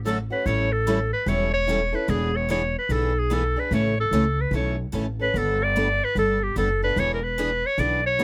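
A clear, up-front clarinet with light vibrato and a breathy subtone carries the melody in this lively, swinging fragment of acoustic string swing at 148 BPM in 4/4, moving through A7, E7, A and Gadd9 chords. Beneath it, a woody, thumpy upright bass with gut strings plucks out the low end, while two bright, freshly strung picked steel-string acoustic guitars supply accompaniment, one of them with audible finger squeak. Close, detailed microphones and little reverb keep the sound dry and intimate across its 8.2 seconds.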